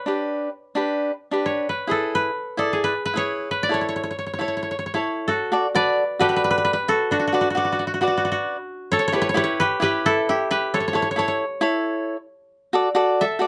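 A mellow, woody koto opens this bouncy, festive calypso fragment at 0.0 seconds, and a moment later a crisp, picked cavaquinho joins beneath it as accompaniment. The koto, played with fingerpicks, carries the melody with a dry, up-front tone, while the cavaquinho's warm acoustic picking sits equally close. The feel is straight and steady in four, with the harmony moving through G, E7 and A before a new section begins at 5.5 seconds on D. From there the chords pass through Bm, Em and A before landing back on D. Close, detailed miking and a touch of light reverb keep both instruments clear and present until the fragment cuts off at 13.5 seconds.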